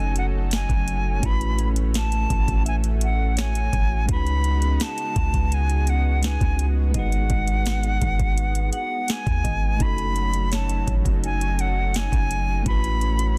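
A dense, heavily limited modern master set in digital ambience carries this longing, moody contemporary R&B passage, cut from a longer piece. A pure, bright concert flute with vibrato sings the melody through tape echo over a bell-like tine electric piano and a lush, detuned unison pad thickened with chorus. A deep, boomy 808-style bass sits up front beside an electronic drum kit with knocking kick, sharp snare and metallic hats that enters at 0.2 seconds, while a soft FM synth bell glimmers in the background with chorus and tape echo until 11.9 seconds.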